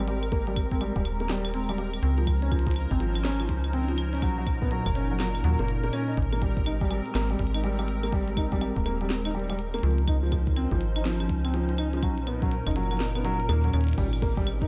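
A metallic, up-front FM bass with a fast, decaying attack and tube saturation anchors this glitchy, intricate IDM excerpt in Ab major at 123 BPM, swung on the sixteenths, as the harmony moves through Abmaj9, Dbmaj9 and Bmaj9. A felt-muted upright piano plays intimate arpeggios with audible action noise, 12-bit sampler grit, tape echo and a filter sweep across the whole passage, over a glassy, ethereal FM pad of sustained chords with ensemble chorus and a bubbling, detuned sawtooth texture stepping through random filter changes in the background. A soft electronic kick and a glitchy kit of claves, clicky hats, a tiny snare and crash sit in a small room, with the kick dropping out at 13.0 seconds and a drum fill at 13.7 seconds, all within a dark production with light reverb.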